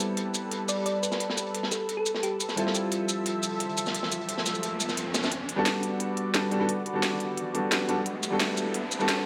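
Lush and warm, this 175 BPM liquid drum and bass excerpt in G major pairs an intimate, boxy grand piano with tape echo and a thick, detuned unison pad under chorus, while a round, tine-like synth pluck with phaser and digital delay carries a brief melody from 0.7 to 2.6 seconds, a crisp, cracking electronic kit runs alongside a dark, gritty breakbeat kit that stops at 5.3 seconds, and a riser from 3.7 seconds leads a build-up through chords moving from Am9 to Em11 in a recital hall reverb.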